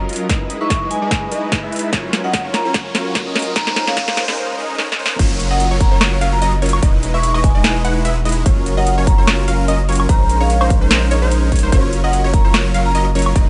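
Lush and bright, this future bass excerpt at 147 BPM in a half-time feel opens with an ethereal, airy pad, huge detuned supersaw chords under a sweeping filter, a ringing vibraphone melody, a very quiet riser and downlifter, a punchy kick and an overdriven trap kit with sharp snare and metallic hats building through a drum fill and a brief break, before the drop at 5.2 seconds brings in a deep, saturated sub bass and a detuned unison pluck arpeggio in the background, with the bass, pluck, supersaws and vibraphone pumping against the kick over Emaj7, Gbmaj7 and Bbm11 chords.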